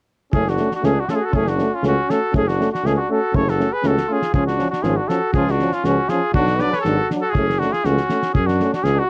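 Balkan brass band folk at 120 BPM in 2/4, fiery and virtuosic in F# harmonic minor, cut from a longer piece, with a clear, up-front trumpet carrying the melody over a mellow, distant second trumpet, clear background euphonium and trombone accompaniment, a soft-attack tuba bass with light vibrato, and a muffled, gritty cloth-damped drum kit of fat snare and tight kick, all from 0.3 seconds in a dry, close 1970s-style studio sound as the chords move from F#m through C# and Bm back to F#m.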